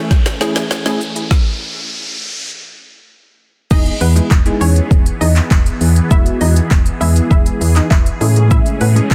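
A round, punchy FM bass drops in at 3.7 seconds, sitting up front and pumping against the sidechain in this upbeat, carefree dance-pop clip at 100 BPM in E major, moving from Amaj7 to Emaj7 and back. Before that, a filter-swept build-up opens with a drum fill from a layered deep house kit of deep kick, woody snare and smooth hats, then the drums stop at 1.3 seconds while an electronic riser, a dark, chorused funky sawtooth polysynth comp and an evolving, full-bodied supersaw swell carry the tension. At the drop, a lush, wave-folded unison pluck melody with tape echo joins the returning drums, all within a dense, heavily limited master and digital ambience.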